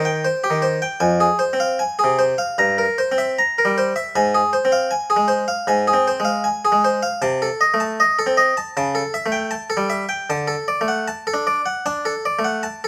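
A light reverb surrounds a single harpsichord set up front, its plucked, round tone sitting mid-forward and sounding like an Italian-style instrument with one set of strings, tuned to A4 = 441 Hz. This flowing, introspective fragment of a baroque-style suite movement moves at about 78 BPM in 4/4 with a rubato feel, the solo part spanning F2 to Bb5 across its 12.9 seconds. The harmony passes from Cm/Eb through Fm and C7/G to Fm/Ab, then moves through Adim/C and A7/C# before arriving on D at 10.3 seconds.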